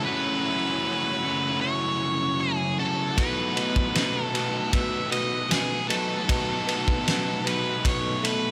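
Bathed in a moderate concert hall reverb, this dreamy, blissful shoegaze and dream pop excerpt drifts at 77 BPM in B mixolydian, its fuzz-drenched lead guitar sitting up front with tape echo as it carries the melody over an F#m7 that gives way to B5 at 3.2 seconds. Two overdriven electric guitars churn out the riff, one thickened by analog chorus and the other, a raw garage tone in the background, trailed by reverse reverb, while a boxy, octave-doubled twelve-string acoustic fingerpicks very quiet arpeggios and a vintage sawtooth string machine holds bright, soft-attack violin chords. At 3.2 seconds a close-miked bassoon with vibrato takes the bass line and a loose indie drum kit arrives with a fat snare, punchy kick and ride cymbal, its gritty, saturated sound rolled off at the top.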